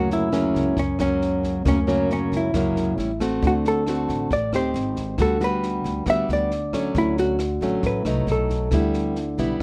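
A fingerpicked nylon-string guitar opens this relaxed, sunny bossa nova fragment in D major, sitting up front with a classical, warm tone as it carries the accompaniment from F#2 to G4. At the same moment a dark, clean hollow-body electric guitar takes the melody between C#4 and E5, its fingered lines smoothed by compression. An upright bass plays pizzicato underneath, woody and growly on steel strings, while a compact cocktail drum kit joins at 0.1 seconds with a punchy kick, rim clicks and a high-tuned snare, its small-room sound smooth and rolled off at the top. The straight 4/4 groove moves at 136 BPM through colourful chords such as F#7, G#maj7, Gmaj7/D and Dmaj7, all under light reverb. Cut from a longer piece, it runs for 9.6 seconds.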